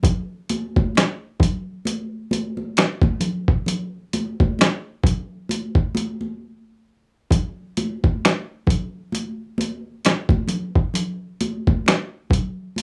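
A relaxed, smooth R&B groove at 66 BPM in 4/4, with a lazy 16th-note swing, runs through this short excerpt cut from a longer piece. Up front sits a dusty soul sampler-style drum kit of finger snaps, hi-hat, thumpy kick and medium-tuned snare, compressed, gritty and tape-toned. Beside it play high-tuned congas with a thick skin and a live-room feel, all in light reverb, with a break at 6.4 seconds before the second section arrives at 7.3 seconds.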